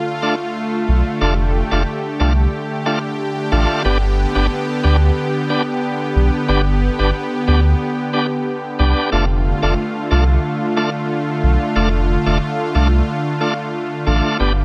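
A light reverb and digital ambience surround this short, summery dancehall passage, cut from a longer piece and moving at a bouncy 91 BPM in a straight 4/4. A lush, detuned sawtooth pad sits up front from the first moment, holding sustained chords with a slow attack, long release and chorus across a range from D3 to G4. Just after it, at 0.2 seconds, a bright tonewheel organ enters with a shouting, lightly overdriven accompaniment, its fast rotary speaker giving the part a vivid, spinning edge. A deep sub bass with an added octave comes in at 0.9 seconds, mellow and full with a fast attack, holding sustained low notes between F1 and D2 as the loudest part of the mix. The harmony rests on F6, moves to G at 3.9 seconds, and returns to F6 at 9.1 seconds for the close of this single sunny section.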